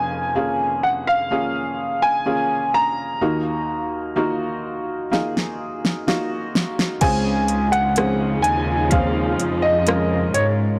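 A grand piano carries the melody from the start, its smooth, vintage tone touched by tape echo, while a felt-muted upright piano plays soft, mellow, intimate accompaniment underneath. This emotional, melancholic pop ballad moves with a straight feel, and the passage is cut from a longer piece. At 5.1 seconds a smooth R&B drum kit enters with a fill, its electronic, produced sound pairing a soft kick and fat snare with metallic hats, rim click and crash cymbal, the kit driven into overdrive and placed up front. From 7.0 seconds, as the harmony settles onto a Dbmaj7 chord, a bowed cello section takes the bass line with a pure, floating chamber quality, and a lush studio string section holds sustained chords in the background, colored by vibrato and portamento. The recording sits in a moderate plate reverb and has a blown-out, overdriven character.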